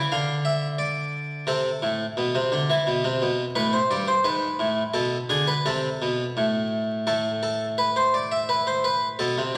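A solo harpsichord, plucked and brilliant with octave strings in the French style, sits up front in a solemn, serious baroque-style two-part invention at 86 BPM in straight 4/4, moving through Dm, Am, Gadd9 and G#dim before a new section at 7.1 seconds settles toward Amadd9, all heard through a wet recital-hall reverb and vinyl crackle in this short cut from a longer piece.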